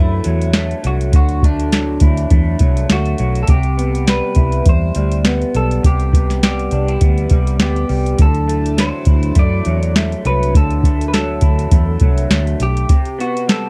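Two slightly broken-up electric guitars through a small old amp carry this laid-back, nostalgic bedroom pop excerpt at 102 BPM in 4/4, with a light sixteenth-note swing. One guitar carries the melody in a compressed, lo-fi tone coloured by analog chorus and analog delay. The other plays accompaniment lower down, softened by lush chorus and a warbly pitch drift. They move between Dadd9 and Cmaj7. A dark, foam-muted fingered bass sits up front with a round, punchy tone, beside a soft vintage rhythm box whose deep kick, crisp snare and metallic hi-hats are just as forward. From 8.2 to 10.5 seconds a string machine adds full, sawtooth-edged sustained chords with a slow attack and ensemble chorus, kept in the background, while the dry cassette-tape sound gives the whole track a homespun, faded character.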